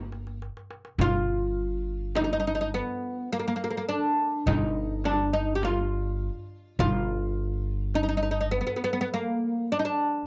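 A mellow, woody fretless oud carries the melody up front in this stately Arabic maqam ensemble piece in G maqam saba, moving in a straight 10/8 at 103 eighth-note beats per minute over a growly, thumpy pizzicato upright bass holding a low G and a clay-shelled darbuka and deep, distant frame drum set back in the mix, all captured as a dry, close 1970s-style studio recording with light reverb, with an opening drum fill in the first 1.0 seconds of this 10.3-second cut from a longer piece.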